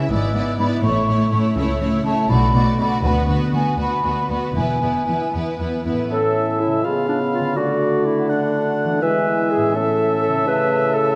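Strings and harp open this spirited, graceful fragment of a fast romantic orchestral movement in A major, moving in a rubato 6/8 at 82 dotted-quarter beats per minute. A rich, expressive violin section carries the melody with vibrato, while a smooth, close second violin section holds a supporting line over lush viola accompaniment. Beneath them sit a dark, woody cello section in the background and a bowed double bass section. Above, a distant, hollow silver flute floats, and the ringing, fingerpicked harp spins arpeggios throughout. At 6.1 seconds the strings give way to woodwinds and brass: a clear solo clarinet and a close-miked cor anglais take up second lines, a punchy, mellow bassoon supplies accompaniment, and a roomy French horn section sustains chords as the harmony turns through C#7 and Dmaj7 before settling back on A, all carried by a wet concert-hall reverb.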